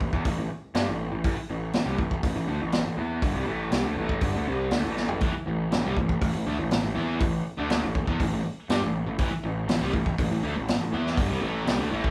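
A raw, overdriven garage guitar riff sits up front from the first moment of this gritty, swaggering classic rock excerpt, joined by a growly fuzz bass and a punchy, mid-forward vintage kit with a rolled-off top, the band playing live together in one large room, and after a drum fill at 5.0 seconds a bright, sludgy distorted guitar enters in the background at 5.2 seconds.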